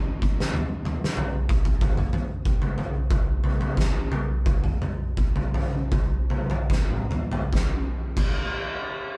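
The recording is dry and close, like a band playing live in a single room, with a gritty, saturated drum kit pushed up front. This short metal passage, cut from a longer piece, has a hypnotic, sludgy mood in a straight 4/4 feel. The only part is an oversized, low-tuned acoustic kit with a boomy kick, a fat snare, dark cymbal crashes and toms, and a pumping room character to its tone. It opens with a drum fill, then the pulse slows down through the middle stretch, and a second fill arrives at 6.7 seconds. The kit plays until 8.4 seconds as the passage moves into its closing section.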